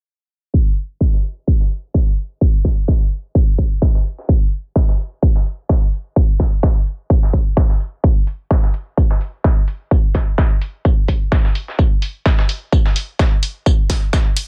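A swung 4/4 groove at 128 BPM drives this gritty, aggressive bass house excerpt, where a punchy, layered electronic kick sits up front, a compressed, sampler-style tambourine and medium-tuned snare add grit from a small room, a layered electronic hi-hat joins at 8.3 seconds, and a low-pass-filtered digital ambience sounds alongside a filter sweep that runs throughout.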